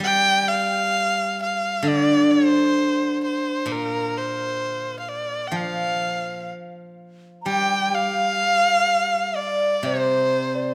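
Graceful and pastoral, this short passage of Chinese traditional music for chamber ensemble unfolds at a rubato 64 BPM in 4/4, cut from a longer piece. A rich, focused erhu carries the melody up front, its close, bowed single voice shaped with vibrato and portamento. Beneath it, a steel-string zither played with fingerpicks gives a ringing, silvery accompaniment in its low register, also placed up front. At 7.4 seconds a low xiao enters with a second line, its bamboo tone breathy and reedy with a straight, softly attacked sound that sits in the background. A moderate concert hall reverb surrounds the ensemble, lending the brief passage a spacious, unhurried air.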